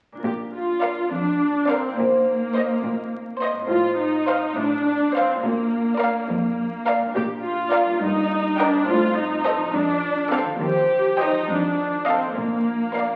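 Whimsical, playful cinematic film cue in Bb major, moving in 6/8 at 69 BPM with a magical air. A bright, ringing concert harp spins fingerpicked arpeggios from 0.1 seconds. A rich viola section with expressive portamento carries the accompaniment, and a warm, lush cello section holds the bass, before a clear, focused violin section takes the melody at 0.8 seconds over a smooth, even second violin line. The ensemble sits in a reverberant recital hall, and the whole excerpt is coloured by the crackle of a very old 78 rpm record as the chords move through Cm7/Bb, F7/A and Adim before settling back on Bb at 12.4 seconds.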